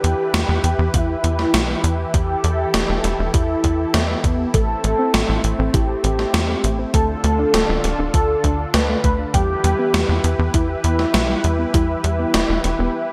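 Synthwave at 100 BPM with a nocturnal, driving mood, this short cut from a longer piece moves through Em, Am, Dm and back to Em as a thick, detuned sawtooth unison lead with vibrato carries the melody over a lush, nasal pad that pumps against the sidechain. A tight, punchy sequencer bass with tube saturation sits up front beside a gated 80s drum machine whose snare carries gated reverb, while an overdriven, thumpy electronic kick joins at 0.9 s. A soft, round pluck with tape echo and shimmer reverb adds dark arpeggios in the background from 4.5 s, before the parts break off at 12.9 s.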